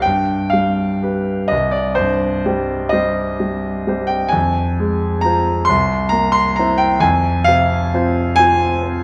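Wistful and melancholic, this is a romantic classical nocturne for solo piano, cut from a longer piece and lasting about 9 seconds. It moves in a slow, flexible 6/8 with rubato, around 40-46 BPM counted in dotted quarters, in C minor with tuning set slightly low at A4 = 437 Hz. A concert grand carries everything alone, spanning C2 to C6, with a deep bass, an open tone and long sustain, placed up front. The harmony opens on G7 before settling on C minor, then turns to F minor at 4.3 seconds, passes through C7, and returns to F minor at 7.0 seconds. A moderate concert hall reverb with a 1.8-second decay surrounds the instrument.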